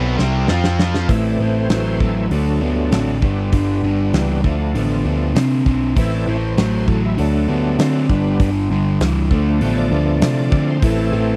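A dry, close 1970s-style studio sound frames this brooding, swaggering classic rock excerpt in A minor at 99 BPM, where a drum fill opens before a bright, shouting tonewheel organ with overdrive, chorus vibrato and slow rotary speaker takes a solo from 1.1 seconds over a crunchy double-tracked overdriven guitar riff, a round, dark hollow-body picked bass, a big rock kit with fat snare and punchy kick, and a tight distorted guitar heard only until 1.1 seconds, as the chords cycle Am, D, G and Dm.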